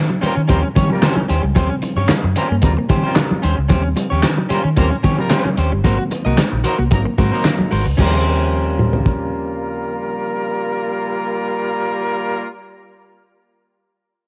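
Lo-fi home cassette recording with light reverb and small room ambience frames this playful, strutting funk excerpt in Eb mixolydian at 112 BPM, moving from Eb13 to Ab9 and back. A muffled, cloth-damped drum kit with a fat snare, tight kick and handclaps sits up front beside a round, foam-muted fingered bass, while a clear horn section with vibrato carries a second line over a slightly broken-up picked guitar. Very quiet ringing congas and a dark, compressed clean guitar riff drop out around 8 s and the drums stop at 9.2 s, while a mellow reed electric piano in the background adds stabs with fast tremolo throughout.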